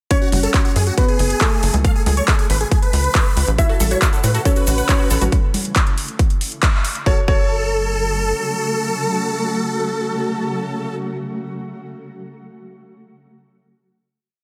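Uplifting trance at 138 BPM in F# minor, soaring and bittersweet, this short piece opens straight into a drop and runs until 7.1 seconds before settling on a final chord. A huge, euphoric supersaw lead carries the melody as a repeating riff over a pedal note in sixteenths, its bright, detuned sawtooth tone colored by phaser, delay and sidechain pumping, while a dark, worn grand piano plays its own repeating riff in octaves as a second line, its action noise audible under a dub echo. An up-front, overdriven four-on-the-floor kick and an overdriven dance kit of metallic hats, claps and high conga drive the groove, joined by a tight, nasal sequencer bass playing off-beat notes. From 0.9 seconds a shimmering, ethereal pad with chorus and octave-up shimmer sustains chords beneath everything. At 3.6 seconds a lush, detuned pluck enters in the background with a six-step arpeggio loop drifting against the bar, gritty with vintage 12-bit texture and dub echo, alongside a grainy, close hand-played shaker in sixteenths. 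The band hits an accent at 6.6 seconds, and after the drums fall away the pad sustains beneath the lead and piano on the closing F# minor chord, all within light digital ambience.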